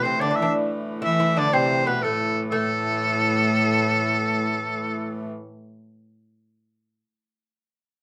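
Recorded outdoors with a light reverb, this short cut from a longer medieval dance in A minor moves at a driving 121 BPM in 6/8, with an ancient, straight feel. A bright shawm with vibrato and slapback echo carries the folk-style melody up front, over a delicate, fingerpicked lute on doubled gut strings and a biting viola da gamba whose airy bow and gut-string tone ring out, while a reedy, wheel-bowed hurdy-gurdy holds a nasal drone. A new passage begins at 2.5 s, and the lute sounds alone from 5.3 s until 5.6 s.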